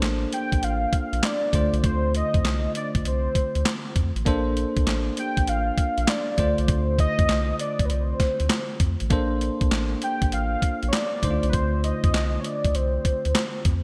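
A flirty, upbeat new jack swing groove at 99 BPM opens with a gritty, compressed sampler-style drum kit with a thumpy kick, high-tuned snare, handclaps and hi-hat bathed in gated reverb, together with a deep, round analog bass and a bell-like tine electric piano playing Bbmaj9 and Dm7 with a swung sixteenth feel. From 0.3 seconds a velvety, detuned synth lead with chorus and vibrato carries the melody up front. The bright 1980s-style digital production is set in a lush hall reverb, and this short excerpt of a longer piece stays in one section throughout.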